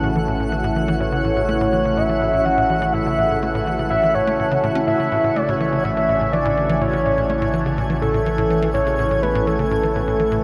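A steady, straight four-beat pulse drives this luminous, cosmic ambient excerpt, set by a tight sequencer bass riff whose punchy, plucked sawtooth and square tones decay under subtle chorus and tape echo. Beneath it, a round sine sub bass holds a deep, mellow low note, while a swirling, detuned analog pad sustains slow-blooming chords through phaser, chorus and shimmer reverb. Higher up, a twinkling granular texture adds sparkling FM shimmer with a long release, bathed in its own reverb, analog chorus and shimmer reverb. At 1.0 s a soft, octave-layered synth lead enters up front with the melody, its full, dark triangle tone carrying vibrato, chorus, gritty 12-bit sampler color, shimmer reverb and tape echo. The dreamy mix is soaked in a huge, wet reverb with a long, lingering tail.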